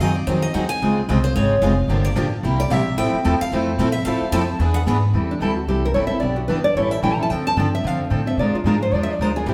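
Acoustic string swing in the jazz manouche style, playful and swinging at a brisk 222 BPM in 4/4, heard as a short cut from a longer piece played live in one room with a wet stone-room reverb. Over a woody, thumpy pizzicato upright bass on gut strings and two picked steel-string guitars comping (a full-bodied dreadnought up front and a boxy parlour guitar in the background), a bright parlour guitar carries a high second line as a solo until 4.8 seconds. At 5.3 seconds a fingerpicked classical nylon-string guitar takes over the melody up front, moving through jazzy chords such as A7b9 and Bb7#11.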